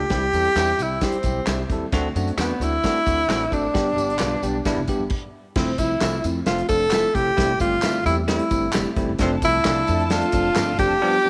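A breathy, close-miked tenor saxophone with slapback echo carries the melody up front in this danceable, uptempo 1960s-style soul at 132 BPM, over a bright, barky tine electric piano, a woody, thumpy upright bass, a punchy small-room drum kit, background tambourine and handclaps and very quiet clean guitar stabs, all in echo-chamber reverb, with a brief stop at 5.1 s before a barely audible ringing vibraphone enters at 8.3 s and a lush studio string section joins at 9.2 s.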